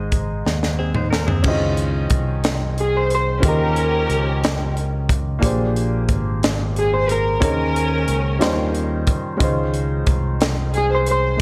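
A slow 6/8 sway at 60 BPM carries this soulful, uplifting gospel piece, cut from a longer work: an intimate concert grand piano with audible action noise and a dark, round fingered electric bass open beneath a crisp fusion drum kit with a punchy kick and high-tuned snare that plays a fill from 0.5 seconds, a bright, twangy clean electric guitar with phaser adds a brief second line at 0.8 seconds, and from 2.8 seconds a mellow, ringing Celtic harp and a lush, vibrato-rich symphonic string section share the melody over chords moving from Ab through Dbmaj9, Eb9 and Bb13, set in light studio reverb.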